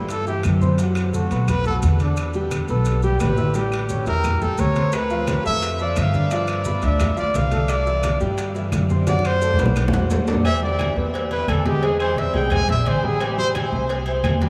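An up-front trumpet with light vibrato takes a lively jazz solo over warm, natural grand piano chords and a dark, thumpy pizzicato upright bass in this sophisticated Afro-Cuban jazz excerpt, while low-tuned congas played with soft hands, distant ringing timbales and agogo bells and grainy maracas sit in the background, very quiet woody claves sound close and dry, compressed, saturated bongos and cowbell join at 4.9 seconds, a drum fill arrives at 9.1 seconds, and a huge ambient reverb places the band in a vast, echoing space.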